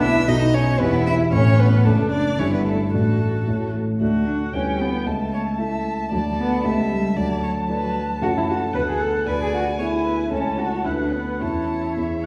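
Graceful and lively, this quick classical-period piano quartet movement at 114 BPM in 2/4 moves from D major to A major at 8.2 s, with an expressive violin melody sung with vibrato and portamento, a woody, distant cello carrying the second line, and a mellow, vintage-toned grand piano set up front with long sustain, the piano sharing accompaniment duty with an even, warm viola, the whole cut from a longer piece and heard from further back in a wet recital hall.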